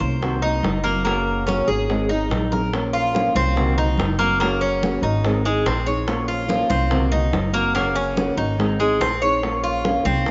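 A straight 4/4 pulse of Cuban son and guajira moves at a brisk clip, carried by warm, vintage, thick-skinned, medium-tuned congas and tight, high-tuned bongos that join at 0.2 seconds, both set back in the mix, the bongos softly played and distant. Up front, a picked Cuban tres spins metallic arpeggios on its doubled strings, some of them octave-doubled, while a woody pizzicato upright bass anchors the low end. A thumb-plucked flamenco guitar fills in the accompaniment beneath them, its tone warm. The harmony cycles through Cm7b5, Gb, Ab and Bbm, and a drum fill at 2.5 seconds ushers in a longer second section that repeats the progression. A moderate plate reverb and a mellow, softened top end lend this nostalgic fragment of a longer piece a warm glow.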